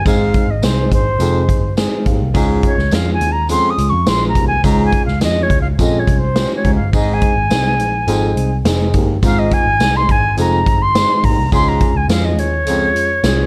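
A dark, lightly reverberant production carries this uplifting, joyful slice of uptempo 1960s-style soul at 105 BPM in Ab major, where an airy, vibrato-laden silver concert flute leads the melody over a mellow grand piano that adds a brief fill at 1.5 seconds, a breathy, close-miked baritone saxophone riff, a round, foam-muted picked electric bass, a punchy big-band drum kit in a big room, and a jingly tambourine in the background.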